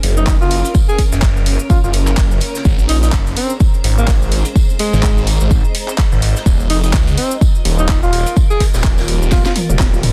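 Bouncy and aggressive, this bass house excerpt drives along at 126 BPM in 4/4 with a swung sixteenth-note feel, moving through Gb, Abadd9 and Ebsus2. A punchy, up-front electronic kick anchors the groove alongside a garage drum kit whose cracking, overdriven snare rides with handclaps, hi-hat and toms. A looser acoustic kit of hi-hat, fat snare and tambourine pumps in the background alongside a grainy, mellow cabasa. The centrepiece is a thick, swirling detuned saw bass, saturated and phased, pumping with sidechain compression and sitting low between Eb1 and Db2. Above it a cloudy, evolving granular pad shimmers quietly in the background, while a smooth alto saxophone carries a pop-style solo melody with vibrato and tape echo from 0.2 to 9.5 seconds. A drum fill arrives at 9.3 seconds, and the dense, heavily limited mix sits in a small room.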